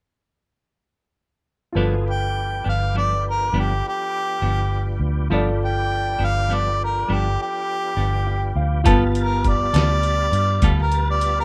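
A slow 12/8 blues at 68 BPM in G mixolydian, rollicking yet laid-back, sits on a round, punchy, foam-muted fingered bass and a dark, picked semi-hollow guitar with tremolo, while a tonewheel organ holds smooth sustained chords through a slow rotary speaker and chorus vibrato. Up front, an overdriven jazz-style harmonica carries the melody with light vibrato and scooped notes, and an intimate, boxy grand piano with audible action noise accompanies it, adding a fill at 8.0 s. At 8.9 s the G7 harmony gives way to G9 as a gritty, pitched-down, compressed sampler-style drum kit with a thumpy kick enters, all captured in a dry, rough home demo mix cut from a longer piece.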